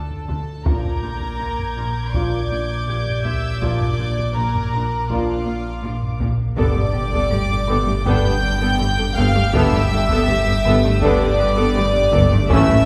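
A straight 4/4 pulse from a taiko ensemble, struck with heavy sticks and kept close and dry in the background, sits under a marimba riff played with medium mallets and a deep, full sine sub bass drone, setting the footing for this tense, ominous suspense film cue. Two warm symphonic violin sections carry a floating sul tasto melody and second line over a rich studio violin texture with light vibrato, joined by a woody viola section, very quiet cello and double bass sections, and mellow French horns with smooth-topped trombones holding sustained chords that move from Dm through Bb to Gadd9. A bright, ringing concert harp enters at 1.0 seconds, drops out at 6.8 seconds and returns at 11.4 seconds, and a wet scoring-stage reverb places the ensemble further back in the room.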